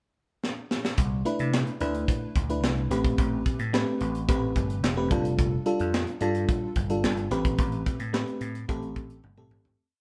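Early-eighties boogie funk with a slick, funky mood, opening on a tight drum fill before a fat, punchy slap bass line and a lush, dreamy FM electric piano with a soft pad layer join for a short verse. The drums sound dark and smooth in a small room, with a high-tuned snare layered with handclaps over a tight kick, while the electric piano plays mellow syncopated chord stabs treated with chorus and tremolo, moving through Cmaj13, Am9 and F69. Another drum fill arrives at 9.2 seconds as the band, recorded live in one room with light reverb, fades out from 7.6 seconds.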